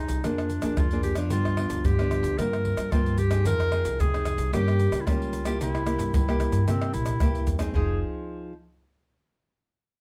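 A moderate studio reverb gives this short cut from a longer samba and choro piece a sense of space, while the percussion of egg shaker, pandeiro, tamborim and a tight surdo sits close and up front. The mood is nostalgic and bittersweet, set in a straight 4/4 over a minor-key progression that moves through chords such as Bb7/F, G7, Gdim and C7 before settling on Fm7 at 7.8 seconds. A soft-attacked clarinet in classical style carries a second line in its middle register. A small-sounding, fingerpicked nylon-string guitar supplies warm accompaniment and holds on until 8.5 seconds, a moment after the other parts have finished. Beneath them, a woody pizzicato upright bass strung with steel strings anchors the low end, giving the intimate arrangement a wistful pulse.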